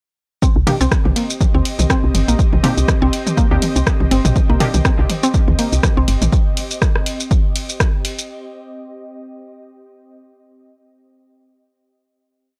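A dry, gritty hardware recording sets this cool, clinical minimal techno drop in a digital ambience, with a punchy four-on-the-floor electronic kick up front from 0.4 seconds, an analog drum machine ticking out swung hats, shaker, rim clicks and ride, and electronic toms scattering clicks and blips in cross rhythm from a larger room. A round, mellow FM bass rolls through a staccato groove with sidechain pumping, while a woody, mallet-like synth pluck runs a chorused, delayed 9-step loop that drifts against the bar. Sparse, muted dub chord stabs echo in the background, one shape moved in parallel, and an ethereal, airy pad enters at 1.0 seconds with slowly shifting, reverb-washed chords that pump with the sidechain.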